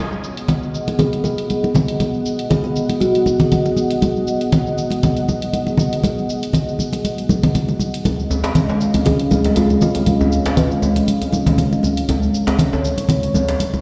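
A deep, detuned sawtooth pad with a sub octave and chorus opens this driving, earthy afro house excerpt on sustained G#m7 chords, joined at once by dark, filtered electronic cabasa and hi-hat and close, damped, thick-skinned congas, while a woody thumb-plucked kalimba rings through dub echo at 1.0 s and returns at 9.1 s, and a deep, soft-handed djembe steps up front at 8.1 s as the harmony shifts to C#add9/G#, all heard in a large, bare room played over a big sound system with a plate reverb tail.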